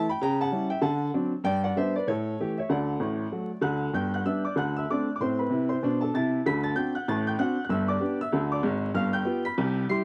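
Stride piano jazz at a brisk 192 BPM in G major swings exuberantly as a bright, woody upright piano plays alone from 0.0 to 10.0 seconds, ranging from G1 to C7 with a brilliant, open tone and long sustain, sitting up front in a dry, close 1970s-style studio sound with vinyl crackle, moving through changes like D7, G and A7 in this short piece cut from a longer performance.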